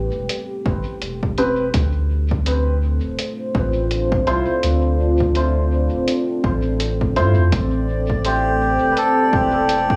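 A deep, detuned sawtooth pad with chorus and a round, mellow sub bass open this spacious, meditative ambient dub fragment, soon joined by a muffled, pitched-down hi-hat with dub echo and a punchy, overdriven electronic kick in a lightly swung groove, while a worn, woody upright piano plays filtered stabs with dub echo from 1.4 to 7.4 seconds over a move from Am9 to Dm7; a glassy texture of drifting overtones arrives at 7.7 seconds, and a reedy, breathy melodica carries the melody from 8.3 seconds, inside a moderate spring-reverb studio ambience.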